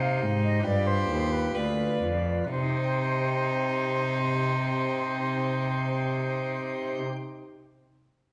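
Solemn yet flowing, this brief excerpt of a baroque-style sonata movement in C minor moves at a rubato 64 BPM in 4/4, easing down over its first 2.5 seconds as a clear, close, vibrato-rich solo violin carries the melody beneath an airy, distant concert flute on the second line, while a bright chamber organ with chiffing flute stops and a smooth, even bowed cello supply the continuo from up front, all washed in a reverberant recital hall.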